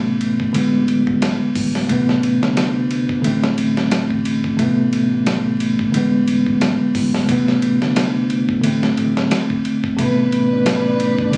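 A bell-like tine electric piano sits up front in this dark, brooding trip hop excerpt at 89 BPM in A harmonic minor, its clean chords shaded by tremolo, a low-pass filter and tape echo as they cycle through A minor add9, add11 and suspended shapes. A growly, bright fingered electric bass and a dusty sampler-style kit with a thumpy kick, medium-tuned snare, hi-hat and ride carry a swung 4/4 groove, all captured on a phone in a room with club reverb, vinyl crackle and compression. Near the close, rich chamber strings with 12-bit sampler grit hold a sustained chord from 10.0 s, and a faint, flickering granular texture with its own reverb fades in from 10.5 s.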